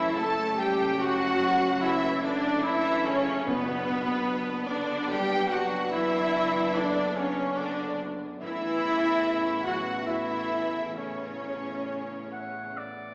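A rich viola section sits up front in this tender, uplifting excerpt of a cinematic film score in B minor, moving at a rubato 72 BPM in 3/4 over F#m, Bm/F# and Aadd9 chords. Violins carry the clear melody with vibrato, while a second violin line, a close-miked clarinet and a very quiet, mellow flute ensemble trace supporting lines over tight French horn chords, a ringing fingerpicked harp, bright cellos and lush double basses, with soft-mallet timpani entering at 3.5 s. A distant, roomy oboe joins at 12.3 s, and the mix is heard from further back in a scoring-stage reverb with a small-speaker sound.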